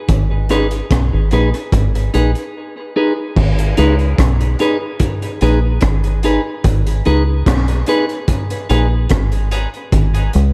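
A round, foam-muted fingered bass and a gritty, saturated breakbeat kit with a tight kick, dark cymbals, hi-hat and rim click open this hypnotic, deep dub reggae excerpt in G# minor at 73 BPM, soon joined by a clean, picked electric guitar steeped in spring reverb and dub echo that carries on after a break at 2.5 seconds and takes a filter sweep from 6.6 seconds in an echo-heavy mix with a small-room ambience.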